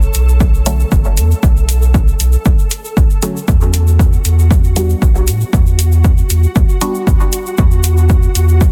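Meditative and nocturnal, this dub techno excerpt in E dorian moves at a steady, straight 117 BPM in 4/4, cut from a longer piece. An up-front, punchy analog kick with a tape-like character and a deep, round sub bass anchor the groove. The soft triangle and square-wave bass pumps with sidechain compression. Layered, metallic electronic hi-hats carry an overdriven bite, and a bright, close acoustic egg shaker sits low in the mix. A flickering granular texture with a slow attack and long release hovers in its own built-in reverb and breathes with the same sidechain pumping. From 0.7 s to 7.1 s a muted, nasal, detuned sawtooth chord stab plucks through a resonant filter with a moving notch, colored by phaser and dub echo, as the harmony shifts from B7 to E5 at 3.5 s, all within a dry, dense and heavily limited modern master.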